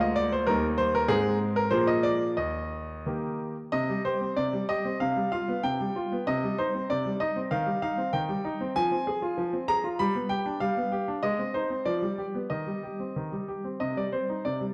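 Graceful and cheerful, this classical-period piano sonatina moves at 95 BPM in 2/4 with a rubato feel, opening in E-flat major before turning to C minor at 3.7 s. A bright grand piano plays solo throughout, its brilliant, natural tone sitting up front with short sustain as it ranges from D2 to B5 through chords such as G7, F minor and A-flat before coming to rest on C minor at 13.8 s. The piano is bathed in a wet recital-hall reverb within a dark production, and the passage is cut from a longer piece.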